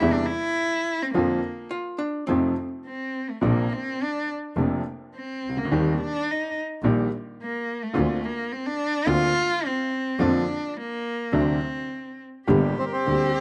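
Recorded outdoors, the sound is dry, with little reverb, and the upright piano carries a slapback echo. This is a dramatic, sultry tango in Bb major at 106 BPM in 4/4, played with a rubato feel and cut from a longer piece. A bowed cello takes a solo from 0.0 to 12.5 seconds, its rich, expressive tone shaped by vibrato, portamento and a soft attack, sitting up front. Beneath it, the woody, boxy upright piano accompanies with audible action noise, while a bowed double bass plays sul tasto, pure and floating, with a distant quality. A hollow-body archtop guitar, miked and amplified, adds a brief dark, clean, picked line at 1.7 seconds. Near the end, at 12.8 seconds, a reedy, smooth bandoneon enters with the melody, just after the harmony has moved through D7 to G minor.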